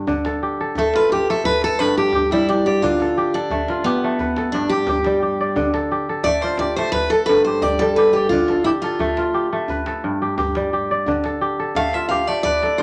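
Set in a moderately reverberant large studio, this reflective, flowing fragment of West African traditional music moves at 87 BPM in 4/4, swaying between Dm and G in D dorian. A mellow, ringing kora opens with crisp fingerpicked arpeggios up front, joined at 0.1 s by a deep, compressed and saturated djembe played with hard hands, its metal rattles buzzing beneath. From 0.8 s a picked dreadnought steel-string acoustic guitar carries the lead melody, its warm tone sitting forward in the mix.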